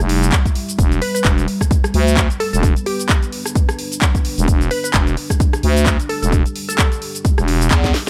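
Bass house with a bouncy, swaggering feel and a swung sixteenth-note groove, cut from a longer piece and resting on a single chord. A growling, thick FM bass with overdrive and sidechain pumping sits up front beside a punchy, overdriven electronic kick that enters at 0.3 s, while an overdriven house kit in a small room adds a cracking snare, bright hats, handclaps, rim clicks and shaker before a drum fill at 7.7 s. From 1.0 s a glassy, crystalline wavetable pluck with chorus and tape echo carries the melody, as a deep, moody pad with chorus, its own reverb and sidechain pumping sustains chords in the background.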